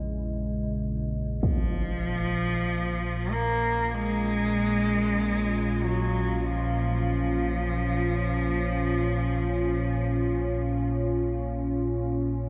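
An expressive bowed cello with vibrato and portamento carries the melody through tape echo from 1.4 to 10.8 s in this ominous, unsettling dark ambient drone fragment in free time and Bb minor, arriving with a huge, bright, low-passed impact just after a very quiet, metallic bronze singing bowl rings over the opening, while an evolving, detuned sawtooth pad with chorus sustains chords and a deep, rumbling drone moves under a filter sweep, the whole piece set in a huge ambient reverb.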